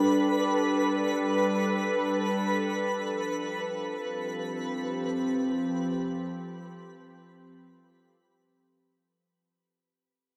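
An evolving wavetable pad sits up front, its mellow, vintage sine tone morphing and warbling through chorus, built-in reverb and shimmer reverb as it sustains a Gadd9 chord that moves to Fadd9 at 2.9 seconds. Alongside it from the start, a granular texture sparkles and twinkles in a higher register, its FM sound carrying an octave-up shimmer with built-in reverb and shimmer reverb of its own. At 1.3 seconds a very quiet analog drone joins them, a chorused blend of sawtooth and pulse waves with pulse-width modulation that gives a warm, mellow, slowly evolving hum. This luminous, serene ambient fragment drifts in free time, tuned to A4 = 438 Hz, and fades out from 0.8 seconds to its close at 9.3 seconds. The whole mix is bathed in a huge, wet reverb with a 7.6-second decay.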